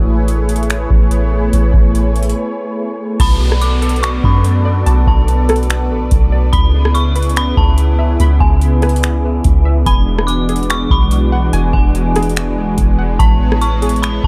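Atmospheric cloud-rap hip hop with a melancholic, spacious mood and a half-time feel, taken from a longer piece. A smooth sawtooth pad holds sustained chords with chorus and sidechain pumping, resting on a round, sine-like 808-style bass that sits up front, while an airy, breathy wind-like texture with its own reverb hovers in the background. A booming analog drum machine enters at 0.3 s with a deep kick, metallic hi-hats, finger snaps, rim clicks and crash cymbal, all of its sound overdriven. After a short break at 2.4 s, an eerie, inharmonic FM bell takes the melody at 3.2 s through chorus, phaser and dub echo, joined by a warbling, lo-fi pluck playing arpeggios in the background with chorus and dub echo, plus a brief downlifter. The chords move from Amaj9 through Bm7, C#m7 and E9 back to Amaj9, in a mix that is dry of reverb but heavy with echo.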